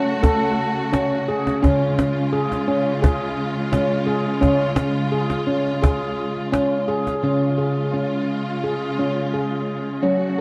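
World meditative tuned percussion in C# major at 86 BPM, this gentle, hypnotic excerpt sets ringing nitrided-steel handpan arpeggios with delay over clear, vibrato-laden bowed string chords and a woody cajon played with soft hands that drops out at 7.2 s, all bathed in a dark echo-chamber reverb as the harmony moves from F#m to C#.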